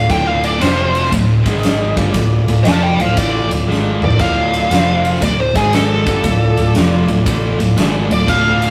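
A swung 4/4 groove at 117 BPM drives this gritty, smoky blues rock and southern rock fragment, cut from a longer piece and running about 8.7 seconds. The big acoustic drum kit comes in at 0.1 seconds with a punchy kick, fat snare, ride, crash and toms ringing in a bright stone room, and it throws in a fill from 3.7 to 4.2 seconds. Underneath, a thick, double-tracked fuzz guitar sits up front with a dark, distorted riff, while a hollow-body short-scale electric bass adds a round, amped low end. Over the top, a biting lead guitar takes a solo through wah and overdrive, picked and bright, as a tonewheel organ holds sustained chords with key click, vibrato and a slow rotary speaker. The harmony cycles from D minor through F5, D5 and G#5 twice, and the whole take sits in a wet stone room reverb with the rough, saturated feel of a rehearsal-room recording.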